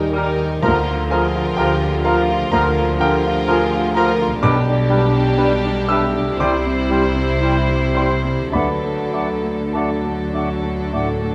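A slow, rubato pulse in 4/4 between 49 and 65 BPM carries this passionate, lyrical romantic movement for piano and orchestra, cut from a longer piece. A clear concert grand piano with deep bass sits up front and leads the melody across a range from B1 to E6, alongside a floating, pure violin section that also carries the melody, played sul tasto with a soft attack. A second, rich violin section in the background joins flute, a distant mellow oboe and a dark clarinet on supporting lines, while a dark viola section and a warm bassoon fill in the accompaniment and a very quiet, roomy French horn section holds sustained chords. Cellos and double basses bowed with light vibrato anchor the bass, and hard-mallet timpani mark a brief D3 between 0.6 and 2.0 seconds. The harmony moves from Eb and Bb/D into G major at 4.4 seconds, passing through C to D by 8.5 seconds, all framed by a moderate scoring-stage reverb.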